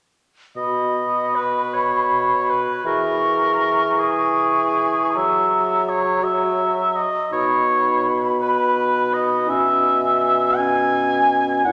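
Lyrical and tender, this slow romantic classical movement for symphony orchestra unfolds in B major, in a lilting 6/8 at about 49-57 BPM counted in dotted quarters, with a flexible rubato feel and tuning set to A4 = 439 Hz. All four woodwinds enter together at 0.6 seconds and carry on until the fragment, cut from a longer work, closes at 11.7 seconds. A clear oboe sits up front with vibrato, while an airy, hollow concert flute floats above it with a soft attack. Deeper in the background, a dark, distant clarinet adds a roomy inner voice, and a bassoon with light vibrato and a smooth top supports the harmony from below. The chords move gently from B through C#m/E and F#7 before settling back on B, all bathed in a lush concert hall reverb.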